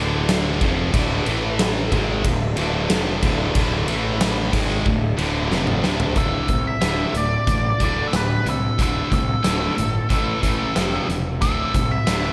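A straight four-four hard rock groove drives this swaggering, energetic excerpt from a longer piece: a huge arena drum kit with a fat snare and punchy kick sits up front, a fuzzy, overdriven picked bass holds the low end, a compressed distorted guitar with slapback echo riffs in the background beside two high-gain guitars (one double-tracked and very quiet until 6.2 seconds), and a faint percussive tonewheel organ with key click and slow rotary holds chords until 6.1 seconds, while a drum fill from 5.5 seconds hands off to a nasal lead guitar with a parked wah and slapback echo carrying the melody up front from 6.2 seconds, the whole band set in a lush hall reverb for a big arena sound.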